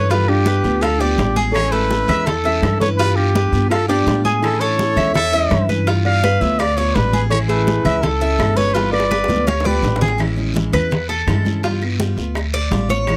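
A breathy, whispered trumpet carries the melody up front in this danceable Cuban son and guajira, over a woody, dark pizzicato upright bass, a small fingerpicked nylon-string guitar on a second line, a bright jumbo steel-string guitar with finger squeak, and metallic double-stringed tres arpeggios, all circling between G7 and Amaj7 in light reverb. Damped congas, tight high-tuned bongos and a raspy guiro sit in the background, joined by distant, very quiet claves. A drum fill arrives at 8.8 seconds, the trumpet and nylon guitar stop at 10.0 seconds, and the tres takes a solo from 10.2 seconds until the cut.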